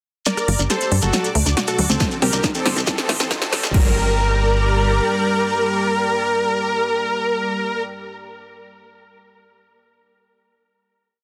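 A dense, heavily limited modern master with light reverb carries this bittersweet, soaring uplifting trance piece, a short build that resolves onto a held final chord from 3.7 seconds. A huge, detuned supersaw lead plays a repeating riff in thirds and sixths over a lush pad with chorus and phaser, a bright background pluck arpeggio under a filter sweep with digital delay, and a tight, galloping sixteenth-note sawtooth bass, with lead, pad, pluck and bass all pumping with sidechain. Electronic drums bring smooth hats, rim click and snare in a fill, joined by a punchy four-on-the-floor kick and crash from 2.0 seconds, alongside grainy hand-played shekere sixteenths and a very quiet riser.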